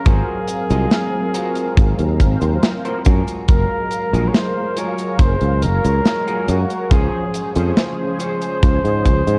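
Vaporwave at a slow 70 BPM in Gb lydian, this dreamy, woozy excerpt sets a vibrato-laden, vintage flugelhorn melody with tape echo over round, detuned synth brass with analog chorus and a very quiet, warbling, lo-fi pad, while the chords move from Ab13 to Gbmaj9 at 3.1 seconds and Dbmaj7 at 6.9 seconds. A dark, clean, fingered electric guitar riff with chorus and delay runs from 0.1 to 8.8 seconds, above a growly, punchy fretless bass sitting up front. A tight acoustic kick and a big-room kit of snare, hi-hat and cabasa drive it forward, all wrapped in a warm cassette-tape production with little reverb.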